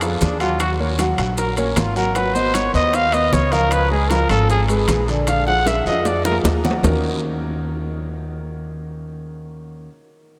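Awash in the long, echoing reverb of a vast cathedral-like space, this fiery, sultry snippet of Afro-Cuban jazz opens with a growling, gritty trumpet solo carrying the melody up front over a smooth, vintage grand piano, a dark, woody pizzicato upright bass, very quiet round low-tuned bongos and ringing metal-shell timbales, with grainy maracas and a raspy guiro in the background. A drum fill arrives at 5.7 seconds, the trumpet exits at 6.4 seconds, and piano and bass carry on alone after the percussion stops at 6.9 seconds.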